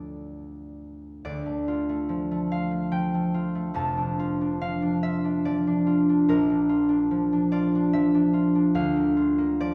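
Gently swaying in three, the rhythm moves with uneven beats and a free rubato that lets the pulse breathe. This serene, peaceful classical fragment, cut from a longer piece, features a single concert harp playing solo throughout. The harp is acoustic, bright and fingerpicked, its ringing tones spanning from a deep F1 up to A5 and sitting up front in the mix. A wet recital hall reverb surrounds it, and the room is heard from further back, lending a spacious, airy halo. The harmony settles on a minor chord before shifting at 3.8 seconds and again at 6.3 seconds, giving the brief passage a calm sense of unfolding.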